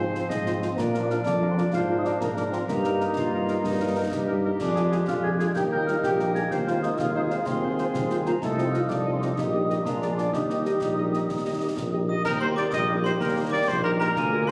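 Caught on a phone in a reverberant room and squeezed by compression, this excerpt from a proud, rousing military-style march for wind band rolls along in a straight 6/8, with a cornet carrying the melody over a prominent, up-front tuba bass and soft dark-cymbal drums from concert snare, bass drum and clash cymbals. A tight, close-miked woodwind section, a pure, hollow piccolo and a euphonium with light vibrato weave second lines, while very quiet, mellow French horns accompany and a brilliant trombone section holds sustained chords in the background. At 12.1 seconds a sparkling, bell-like glockenspiel struck with brass mallets rings out as the music moves into a new section.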